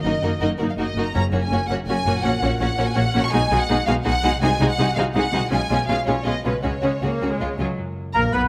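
A lush, expressive violin section sings the melody up front in this restless, stormy classical passage in triple time, cut from a longer piece. A rich second violin line, an intense viola section, smooth cellos and double basses, and a ringing, thumb-plucked harp sit behind it, while soft-mallet timpani add a round stroke at 1.1 s. At 8.1 s a hollow flute, a clear but distant oboe and a very quiet clarinet join on a second line, joined a moment later by a mellow bassoon and sustained chords from a very quiet horn section, all heard through light reverb and close, detailed microphones.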